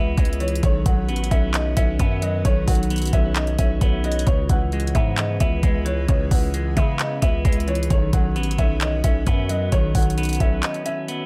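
A dry, echo-heavy mix opens this dark, hard-hitting half-time trap cut, taken from a longer piece: a felt-muted upright piano carries a soft, boxy melody, and a clean semi-hollow electric guitar accompanies, both trailed by tape echo. A very quiet, detuned pad holds ethereal chords behind them over C#m7 and Badd9, while a growling, buzzy 808-style bass and an up-front trap kit of knocking kick, bright hi-hat and handclaps hit hard underneath. The bass stops at 10.6 s, opening a brief break before the clip ends at 11.3 s.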